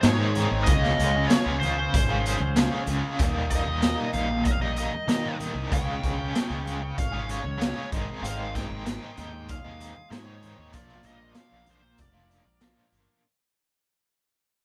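Recorded live in one room with light reverb, this hazy, hypnotic psychedelic rock excerpt at 95 BPM fades out from 1.2 seconds, with a gritty, boomy garage drum kit and a double-tracked overdriven guitar riff with tremolo sitting up front over a growly fuzz bass, while a dark, smooth lead guitar with wah and overdrive carries the melody alongside a very quiet, buzzy vintage combo organ with light vibrato and faint, bright congas that enter at 0.4 seconds, all moving through Ab, Db, Eb and Bb chords.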